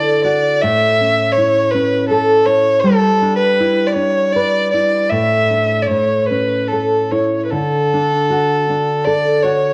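Celtic folk in the form of a slow air, this short excerpt moves in a rubato 3/4 at roughly 74-82 BPM in D major, with a wistful, pastoral mood. A single dark fiddle carries the melody throughout its 9.7 seconds, bowed with a light vibrato and a woody tone that sits up front yet sounds somewhat distant. Beneath it, a nylon-string guitar provides accompaniment, thumb-plucked on old strings for a full-bodied, deep classical sound. The harmony drifts from Dadd9 through A, G6 and Asus4 before settling on D at 7.5 seconds. A moderate scoring-stage reverb surrounds the pair, while a worn cassette-tape character adds a warbling pitch drift that gives the recording an aged, faded cast.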